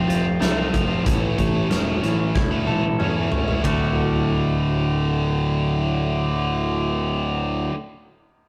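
Quiet-loud alternative rock with a cathartic, brooding mood, this short cut moves from F to A and then settles on D as a clean, fingered electric guitar plays arpeggios alongside a bright, tight distorted guitar riff sitting up front. A growly fuzz bass with overdrive holds the low end, while a big acoustic drum kit with a dark tone, fat snare and punchy kick plays a fill from 2.3 s and drops out at 3.8 s. Everything sits in a moderate stone-room reverb with the rough feel of a rehearsal-room recording.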